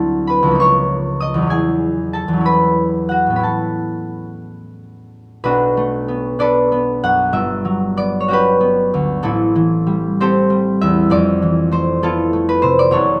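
Flowing in a rubato 6/8 at roughly 58-66 BPM, this wistful, mysterious classical excerpt features a solo concert harp, fingerpicked and ringing up front with close, detailed presence and light reverb across a range from F1 to D#6, its extended chords moving from D13 through E69 and Aadd9 into a new section at 5.4 s on Bm9, then on through Gmaj7#11 and Am9 to Fmaj7#11 at 11.1 s before the cut at 13.2 s.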